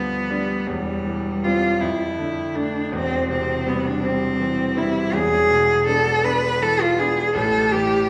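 A wet recital-hall reverb surrounds this short romantic classical fragment, heard from further back in the room, while the cello and grand piano themselves sit up front. In 6/8 at a rubato 54 BPM in C major, a single bowed cello carries a tender, serene melody with a rich, smooth and even tone and vibrato, over a bright, brilliant grand piano accompaniment with a vintage character and long sustain. Both play together from the opening through 8.1 seconds, with the harmony moving from G7/D through C/E and Dm/F to E7 before settling on A5 at 7.4 seconds.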